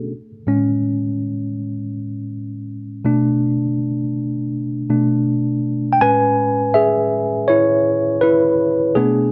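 A mellow tine electric piano opens this short soul excerpt on its own and carries it throughout, playing solo from the start to 9.3 seconds. The mood is romantic and warm, set at an unhurried 81 BPM in 4/4 with a straight feel, in A major. The piano sounds worn and slightly out of tune, yet clean, direct and up front, spanning A2 to G#5. Its harmony moves from Amaj7 to Bm7 at 3.1 seconds, then settles on Amaj9 at 6.0 seconds. A light reverb gives the lone instrument a touch of space, and the passage feels cut from a longer piece.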